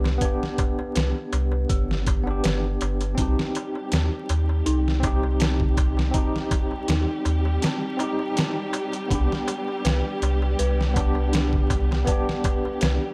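A gritty, pitched-down, overdriven sampler-style drum kit with a thumpy kick and medium-tuned snare sits up front in this brooding, hypnotic trip hop excerpt at 81 BPM in C harmonic minor, joined by a deep, round dub sub bass, a bright tine electric piano with tremolo and tape echo, eerie detuned synth bell arpeggios, a crisp darbuka in the background, lush distant strings entering at 3.2 seconds, and vinyl crackle throughout.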